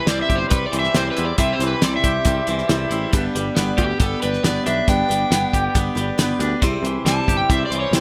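Folk rock and heartland rock with a hopeful, jangly mood, this short cut from a longer piece features an up-front, overdriven slide guitar soloing over a full-bodied steel-string acoustic guitar, a bright, twangy electric guitar riff, a growly electric bass and a dry, damped 70s drum kit with a fat snare and tight kick, over chords moving from C to G and back to C in light reverb.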